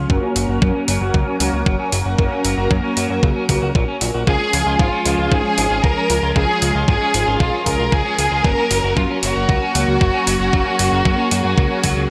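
A swirling, phased string machine with a filter sweep, a fat, detuned sawtooth bass and a slightly broken-up picked electric guitar playing chorused arpeggios in the background open this nostalgic, bittersweet italo disco excerpt at 115 BPM together, joined moments later by dark, round synth brass stabs, a thumpy, overdriven sampler-style kick and an overdriven sampler-style hi-hat, before a rich, bowed violin section takes the melody up front at 4.3 seconds, all over F# and C# chords in a bright 1980s-style digital production soaked in lush hall reverb.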